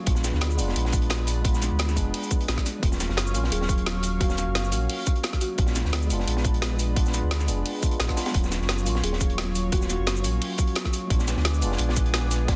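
A tight, up-front electronic kick and a layered kit with a woody snare and bright hats drive this dreamy, rolling liquid drum and bass excerpt at 174 BPM in Eb minor, backed by a gritty, saturated breakbeat kit tucked in the background, a deep sine sub bass, a mellow tine electric piano with dub echo, and a lush, warbling sawtooth pad with chorus and sidechain pumping over Bb7b9 and Ebm9 chords, while a buzzing, woody marimba with delay adds brief melodic touches at 3.5 and 9.0 seconds.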